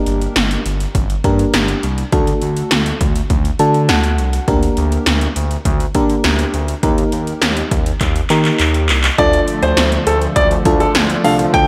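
Synth-pop at 102 BPM in G harmonic minor, cool and melancholic, this excerpt opens with a lush FM electric piano layered with a soft pad, shimmering with chorus and tremolo over a smooth, detuned synth bass and punchy 80s electronic drums with gated snare, metallic hats, handclaps and a roomy, tape-tinged snap. The electric piano slips in a fill at 3.3 seconds and the drums roll through a fill before the second section at 9.2 seconds, where the harmony shifts to Dm and a clear, intimate grand piano with audible action noise and delay enters alongside a brassy, bold analog pad with vibrato. The whole mix is dreamy and soaked in plate reverb.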